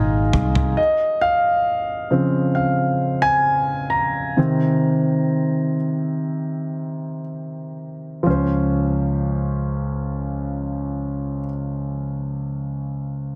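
In straight 4/4 at 58-68 BPM, a punchy fretless electric bass with lush chorus opens this hopeful, tender pop ballad excerpt in Db major over an Ab7 chord, and a short fill on warm, rolled-off acoustic toms joins at 0.3 seconds. Both stop at 0.8 seconds, leaving the up-front concert grand piano to play alone with deep bass and a natural tone as it moves from Dbmaj7 to Cm7 and the tempo slows until 8.3 seconds. Moderate plate reverb surrounds a dense, heavily limited modern master, and the piece returns to Dbmaj7 as a new section begins.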